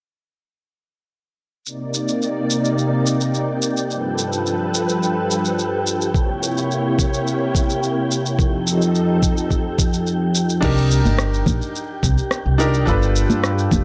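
A dry, gritty recording frames this wistful sunset chillout passage in C dorian at 107 BPM, opening on silky, vintage string-machine chords with ensemble chorus, moving through Cm9, G9, C7b9 and F7 over a layered electronic deep house kit of crash, rim click and shaker, while an airy, breathy wind-like noise texture drifts in with its own reverb. A compressed, thumpy electronic kick joins at 6.1 seconds. When the strings stop at 10.6 seconds, a woody, dark pizzicato upright bass with tube saturation and a brilliant, short-sustain grand piano through analog delay come to the front, soon joined by close, hard-handed acoustic congas.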